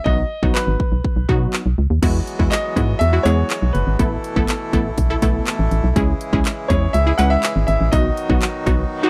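A dry, close recording with a 1970s studio feel carries this summery, carefree dance-pop excerpt in E major at 122 BPM, where a clear baby grand piano with slapback echo plays the melody over crisp, detuned wavetable chord stabs and a hollow, organ-like FM bass that pumps up front beneath a punchy, layered pop kit of kick, bright hi-hats, handclaps and crash. At 2.0 seconds a reedy accordion enters quietly with sustained chords as the harmony moves through Eadd9, Asus2 and C#m before settling on B. A brief electronic reverse cymbal sounds in the background at 9.0 seconds.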